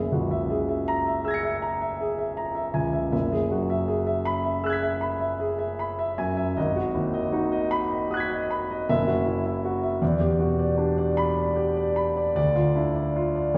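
Dreamy and luminous, this excerpt of impressionist solo piano drifts in 9/8 at a slow 52 beats per minute, counted in dotted quarters, with uneven beats and a free rubato feel. A concert grand carries everything alone from 0.0 to 13.6 seconds, its tone warm and open, with deep bass and long sustain, placed up front in the sound. The part ranges from F#1 up to C#7. The harmony moves through F#9, Eadd9/F#, G#m7 and Esus2/F#, then shifts to Em7 around 10.0 seconds before settling on Dm at 12.4 seconds. A wet recital hall reverb with a 1.3-second decay surrounds the instrument, giving the feel of a church or concert hall.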